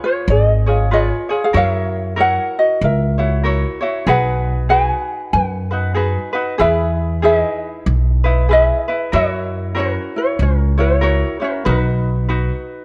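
Dreamy and languid, this short Hawaiian passage, cut from a longer piece, drifts along with a gentle swung eighth-note feel in 4/4. A thumb-plucked acoustic ukulele carries the melody up front, its mellow, light tone ranging fairly high, while a second, fingerpicked ukulele supplies softer accompaniment beneath it. An upright bass enters at 0.3 s with woody, dark pizzicato notes on gut strings, giving a thumpy low foundation that sits close in the mix. The harmony moves through C#7, F#7, B6 and Emaj7 before returning to F#7 and settling on B at 11.7 s. Close, detailed microphones and a light touch of reverb keep the sound intimate and clear.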